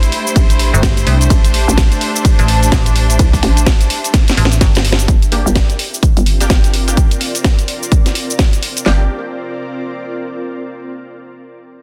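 An aggressive, bouncy bass house excerpt at 127 BPM in G dorian, cut from a longer piece, opens on a drop where a hollow, knocking FM bass and a metallic, overdriven FM bass pump against two layered house drum kits, one carrying finger snaps, hi-hat, ride, shaker and cracking snare up front, the other adding kick, handclaps and snare from 0.4 seconds, both with a tape-warm, small-room character, all under a clear symphonic string section holding sustained chords and an ethereal, chorused pad. After a drum fill from 4.1 seconds, the strings and metallic bass stop and the harmony shifts from A minor to G minor at 5.1 seconds, with a bold, bright orchestra-hit-like sawtooth stab with phaser and delay entering shortly after. The mix is dense and heavily limited with light reverb, and the mellow pad lingers alone to the end.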